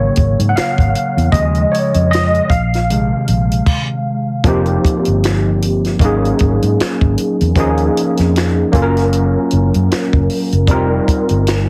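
A lightly swung 16th-note groove at 77 BPM in 4/4 carries this sultry, introspective R&B and neo-soul excerpt in F phrygian, where a gritty, overdriven tine electric piano heard through a combo amp with ensemble chorus sits up front on ninth sus4 and major-seventh chords, featuring in a solo passage over the first 4.4 seconds with a stop at 3.7 seconds, while a round, foam-muted vintage fingered electric bass anchors the low end and a dry compact cocktail kit with punchy kick, high-tuned snare, finger snaps, hi-hat and dark cymbals joins at 0.2 seconds, all wrapped in light reverb and a heavily compressed radio-like sound.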